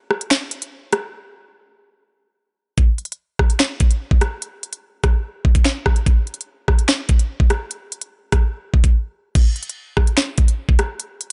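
An electronic drill drum kit sits up front, pairing a knocking kick and sharp snare with crisp hi-hats, rim clicks, finger snaps and crash cymbal in a half-time hip hop groove that feels tense and ominous. The dry, dark-topped recording opens with a break that runs to 2.8 seconds, pauses for another brief break at 8.9 seconds, then moves into a new section at 9.4 seconds before the cut.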